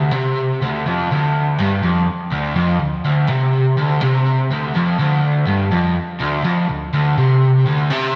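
Rock in D minor at 123 BPM in a straight 4/4, this brief cut from a longer piece has a heavy, menacing mood. A single crunchy, overdriven electric guitar carries the whole 8.2 seconds alone, picked and double-tracked in a low register from D2 to C3, sitting up front with a lush chorus and digital delay. A lush hall reverb with a 2.2-second decay gives the bright, 1980s-style digital production a spacious, wet sheen.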